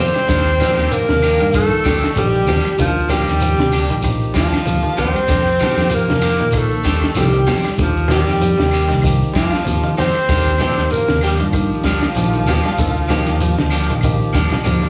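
A driving, funky afrobeat groove at 96 BPM in 4/4 with a light sixteenth-note swing, built on a tight funk kit with a high-tuned snare, a round, punchy fingered bass, very quiet damped congas and woody claves, and a grainy shekere set far back. Over chords moving from Ebmaj9 to F9sus4 and back, a breathy, intimate alto saxophone carries the melody while an edgy tenor saxophone with scooped notes and vibrato plays a second line. A slightly broken-up guitar adds stabs, a clean semi-hollow guitar with lush chorus picks arpeggios, and a barky, lightly overdriven electric piano sits in the background, all heard through a club PA with room reverb and slapback echo on several parts, until a drum fill at 14.0 seconds ends the excerpt.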